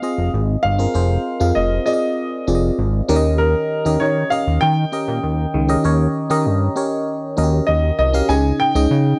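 A warm concert grand piano carries the melody with a slapback echo over a glassy, bell-like FM electric piano treated with chorus and phaser, while a glossy chorused synth bass with a filter pluck enters at 0.2 seconds, driving this dramatic, urgent 1980s-style pop cut at 98 BPM through Fm7, Eb7 and Dbsus2 in a dry, close studio sound with light reverb.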